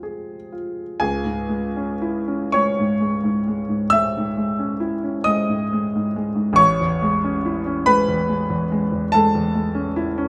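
Romantic classical nocturne for solo piano in C# minor, its melancholic, mournful mood unfolding at a slow 37-49 BPM in 12/8 with free, rubato timing and tuned to A4 = 442 Hz. A clear, worn concert grand sits up front with a deep bass and natural tone, ranging from A1 to E6 under light reverb. Cut from a longer piece, the passage moves from Fm to C#m at 1.0 seconds and settles onto Amaj7 at 6.6 seconds.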